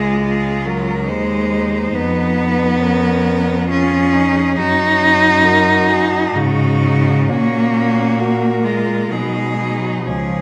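An up-front bowed cello plays a focused, smooth-topped accompaniment alongside a second forward cello on the bass line. Above them, a rich, even cello carries the melody with vibrato, while a fourth cello adds a soft-attacked, expressive second line with portamento in the background. This tender, lyrical classical passage for cello ensemble, cut from a longer piece, moves in a rubato 3/4 at about 67 BPM in F# major over 10.4 seconds, set in a wet scoring-stage reverb.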